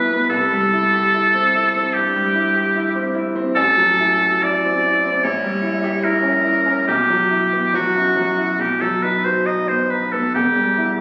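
Romantic classical chamber music for oboe and baby grand piano, cut from a longer piece, unfolds with a yearning, solemn mood and a freely breathing rubato pulse. The oboe carries the solo melody up front with a clear, punchy tone, light vibrato and a smooth top, while the brilliant, natural-sounding piano supplies accompaniment reaching down into its lowest register. The harmony drifts from C through diminished and suspended colours toward a close on E minor near 10.3 seconds, heard through concert hall reverb with the roomy, compressed character of a phone recording.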